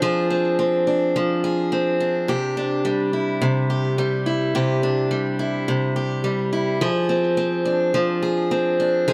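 A picked steel-string acoustic guitar plays alone from the first moment, its fresh strings and parlour-sized body placed up front in a playful, warm folktronica fragment with a lightly swung sixteenth-note feel. The harmony moves from Fm6 to Cadd9 at 2.3 seconds and back to Fm6 at 6.8 seconds. A moderate plate reverb adds a lingering glow before the clip, cut from a longer piece, ends at 9.1 seconds.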